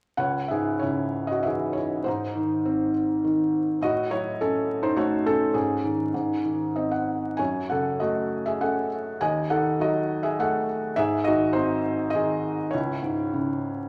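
In a rubato 3/4 that drifts between 92 and 106 BPM, this short, bittersweet, moody piece of lyrical classical solo piano sits in C# harmonic minor, tuned to A4 = 441 Hz. A felt-muted upright piano plays alone from 0.2 to 13.9 s, spanning C#2 to G#5, heard up front with a soft, intimate tone, thin felt and audible action noise, and it adds a brief fill around 6.4 s. The harmony wanders from C#m through G#, F#madd9 and D#dim before settling back on C#m, all bathed in a lingering recital-hall reverb with a layer of vinyl crackle.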